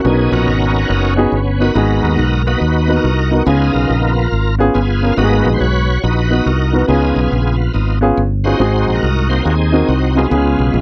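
A swung 140 BPM pulse in 4/4 drives this uptempo gospel excerpt, hopeful and soulful, as a fingered electric bass sits up front with a dark, round, punchy tone beneath a woody upright piano comping through chords like Bmaj7, G#m7 and C#7. Over them a bright tonewheel organ takes the solo for the full 10.8 seconds, its shouting, lightly overdriven voice colored by key click, chorus vibrato and a slow rotary speaker. The sound is dry and close, in the manner of a 1970s studio recording.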